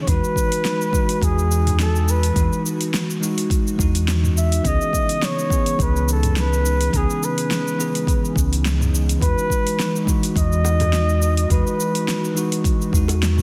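A muted trumpet with a bucket mute opens the excerpt alongside a bell-like tine electric piano and an airy, breathy pad, setting a sunny, blissful sunset chillout mood at 105 BPM in E major with a gentle sixteenth-note swing. The veiled, dark trumpet carries the jazz-style melody with vibrato and scooped notes, trailed by delay, while the bright, clean electric piano plays accompaniment and the pad holds soft, detuned sustained chords with slow attack and chorus, sitting very quiet beneath. From 0.1 seconds a round, dark hollow-body electric bass anchors the low end, joined by a deep electronic kick and a deep house kit of cabasa, metallic hi-hat, fat snare and toms, both drum parts carrying a tape-warm, layered character and studio ambience. The harmony moves from Emaj9 to C#m7 and back to Emaj9, and at 10.6 seconds tight, high-tuned bongos slip in in the background. The mix has light reverb and a dense, heavily limited modern master, with the bass and kick sitting forward.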